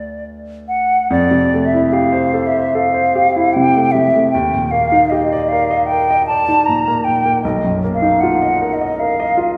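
A hollow, airy concert flute with vibrato and a crisp attack carries the melody up front in this dreamy, pastoral excerpt of impressionist classical music, moving in a rubato 4/4 at around 68-80 BPM. A polished baby grand piano accompanies it with a present, clear sound, its harmony drifting from Fmaj9 at 1.1 seconds through Ebmaj7 to Bmaj7#11 at 7.4 seconds. A wet recital hall reverb surrounds the duo and gives a sense of listening from further back in the room.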